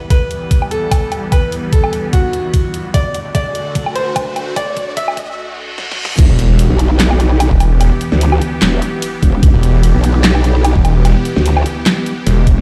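A snarling, detuned sawtooth bass and a growling, formant-filtered wobble bass crash in at the drop around 6.2 seconds, both distorted and up front, powering this chaotic, heavy wobble dubstep excerpt in E minor at 148 BPM with a swung half-time feel. Before that, a lush supersaw pad with phaser and sidechain pumping holds Em and D chords under a brilliant grand piano melody with digital delay, while a filter sweep, a background riser and a reverse cymbal build toward a short break and an impact. A knocking, tape-colored kick and a dubstep kit with a huge snare, bright hats, handclaps, woodblock and crash pound throughout, heard through a big sound system in a bare stone room with a faint mains hum.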